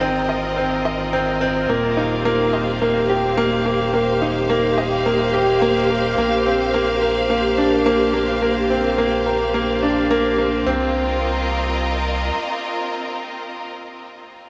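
This piano and strings electronica excerpt moves at 107 BPM in 4/4 with a straight feel in C minor, and its mood is intimate and melancholic. A bright baby grand piano carries the riff from Bb3 to Eb5, sitting up front with tape echo and audible action noise giving it a close, brilliant presence. Alongside it, a lush studio string section holds sustained bowed chords between C4 and F5, smooth and even with vibrato, sounding somewhat distant in the blend. A round analog bass built from square, sine and wave-folded tones adds a deep, mellow and evolving low end from Eb1 to C2 before dropping out at 12.3 seconds. The harmony moves through Ab, Eb and Bbadd9 during the opening drop, then settles on Cm as a new section begins at 10.7 seconds. The whole mix is soaked in a huge ambient reverb, giving it a dreamy, wet atmosphere alongside a trace of small room ambience.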